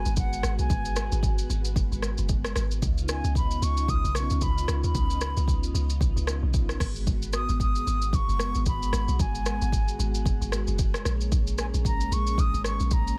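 A swung sixteenth-note groove from an up-front electronic afro-pop kit of kick, metallic hats, rim click and shaker drives this deep, hypnotic amapiano cut alongside a dark, round log drum bass with a fast, percussive attack, while a vintage, organ-like string ensemble holds soft sustained chords through phaser, ensemble chorus and sidechain pumping beneath an airy, mellow silver concert flute melody with expressive vibrato and digital delay, the whole set in a dry, dense, heavily limited modern master.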